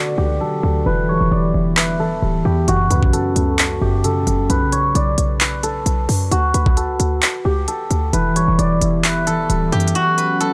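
This is a brooding, hard-hitting trap excerpt in a half-time feel at 132 BPM, moving through D, Em, F#m and Bm chords. An up-front steel-string zither carries the melody with a silvery, fingerpicked tone, while a concert harp provides warm accompaniment, and both sit behind a low-pass filter as a filter sweep unfolds across the passage. A short 808-style bass adds punchy, tight sine lows with a noise layer and a fast, decaying attack, and the trap kit arrives at 1.8 seconds during the opening break, with a knocking kick, crisp hi-hats and handclaps in a tape-warm, electronic sound. At 10.0 seconds the kick drops out, and a warbling, nostalgic lo-fi pad enters in the background at 10.2 seconds, its sawtooth and triangle chords softened by chorus and built-in reverb. The overall mix is dry, with little reverb.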